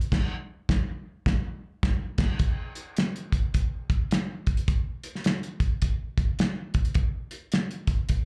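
Soul drums carry this short, joyful fragment from a longer piece. A cloth-damped, thuddy acoustic kit sits up front for the whole 8.3 seconds, with a tight kick, a medium-tuned snare, hi-hat, and a crash cymbal with a dark tone, all warm with a rolled-off top. The groove swings its eighth notes in 4/4 at 105 BPM, and a band accent runs through the opening stretch before the music moves into a new section at 2.4 seconds. The sound is of a live gig heard through the venue's PA, with a moderate club reverb wrapping the kit in a snug, small-room glow.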